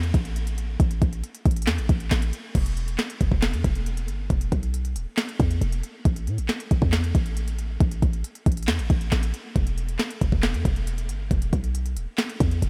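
A deep, boomy 808-style bass with a sine core, a noise layer and a fast attack that then decays opens this eerie, melancholic trap cut together with an overdriven electronic drum kit, both placed up front from the first moment. At 137 BPM in a half-time feel and E harmonic minor, the kit brings a knocking kick, sharp snare, crisp hi-hats, handclaps and crash cymbal with a small-room character, while the bass sits low and warm beneath it. A light reverb colours the mix as a brief opening passage gives way to a new section at 2.5 seconds that carries on until the cut at 12.7 seconds.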